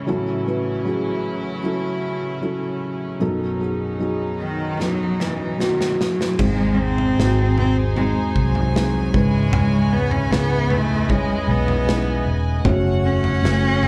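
Heard through a club's PA with light reverb and room ambience, this longing, emotional pop ballad fragment in C# minor at 77 BPM opens with a soft, felt-muted upright piano, its action noise audible and its tone carrying a slapback echo, over reedy, gut-string chamber strings holding sustained chords; a rich, vibrato-laden solo cello then takes the bowed melody at 4.4 seconds, a punchy acoustic studio drum kit with a pumping room sound enters on a fill at 4.8 seconds, and a dark, round, foam-muted fingered electric bass joins at 6.4 seconds.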